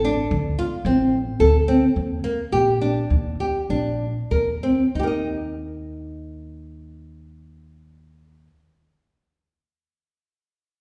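A fingerpicked nylon-string guitar with old strings and a small, up-front sound plays arpeggios in this restless, playful contemporary chamber piece in 5/4, set in Eb lydian at 92-111 BPM and cut from a longer work. A pizzicato upright bass with gut strings adds a thumpy, woody low line beneath it, and both parts play throughout while the tempo slows over the first five seconds and the harmony moves from D7(no3) to Ebmaj7(no3) before settling on Eb5 at 5.0 seconds. A wet recital-hall reverb surrounds the pair, giving the brief passage the air of a church or concert hall.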